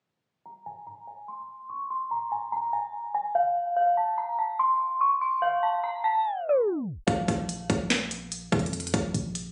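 A dark, detuned FM synth bell with an eerie, inharmonic tone and long release opens this brooding half-time trap excerpt in Bb minor at 145 BPM, carrying the melody through chorus, phaser, delay and a low-pass filter sweep until a tape stop from 6.2 s gives way at 7.1 s to a break, where a boomy sine 808 bass with a noise layer joins an up-front electronic kit of hard-clipped kick, sharp snare, crisp hi-hats and handclaps, the whole cut sounding as if captured on a phone in the room, dull above 10.5 kHz.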